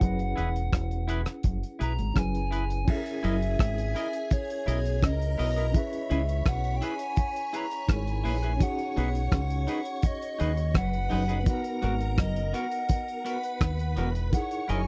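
A reedy, woody FM lead carries the melody through chorus, phaser and tape echo in this smooth, longing lovers rock reggae excerpt at 84 BPM, riding over a deep, round dub bass and a muffled, cloth-damped drum kit of tight kick, rim click, hi-hat and dark crash that sit up front. A worn, slightly out-of-tune tine electric piano with light overdrive and tremolo fills out the harmony, while a dark, fingered electric guitar plays a slapback-echoed riff in the background and a clean, twangy guitar adds stabs through harmonic tremolo. From 2.9 seconds a shimmering string-machine violin line joins as a soft second voice over chords such as F#13, C#m7 and G#m9, all set in a dry, close, lightly reverberant 1970s-style studio sound.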